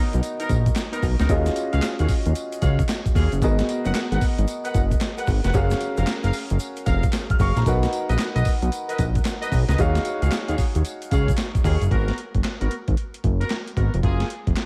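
This bouncy, slick new jack swing excerpt opens with a warm baby grand piano, soon joined by a fat, detuned sawtooth analog bass with a filter sweep, a gritty, overdriven sampler-style drum kit with thumpy kick, handclaps, hi-hat, snare and tambourine, a very quiet grainy egg shaker, and distant, roomy jazz horn stabs with tube saturation and analog delay, swinging at 113 BPM over lush chords like Bmaj7, Ebm11 and Abm9 until the piano and shaker drop out at 11.9 seconds.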